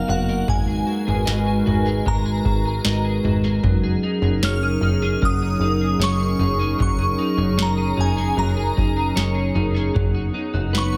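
An echo-heavy, spring-reverbed haze opens this floating, blissful dream pop excerpt at 76 BPM, where a shimmering FM bell with a chorused, delayed halo sings the melody above a dark, picked clean electric guitar's chorused arpeggios, a hollow, flute-like pad holding G#m7, F#69 and B/F# chords, a punchy, plucky analog bass, and a booming analog drum machine with a deep kick, crisp snare and toms.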